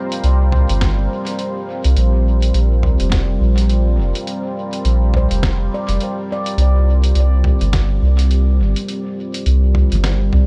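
A round, deep dub sub bass sits up front in this meditative ambient dub excerpt at 104 BPM in 4/4, its triangle and square-wave tone holding sustained notes with a fast attack. Around it, a dark, moody pad of detuned sawtooth unison and a sine sub octave carries slow-attack chords with a long release, chorus and its own reverb, moving between C9sus4 and Bb69. A handpan of nitrided steel rings out mellow arpeggios under soft fingertips, set back in the mix with tape echo. A compressed, lo-fi, sampler-style kit of hi-hat, muffled pitched-down snare and toms plays with a 16th-note swing through dub echo. A gentle electronic kick sits in the background, entering at 0.8 s and stopping at 7.9 s, all within a dry room.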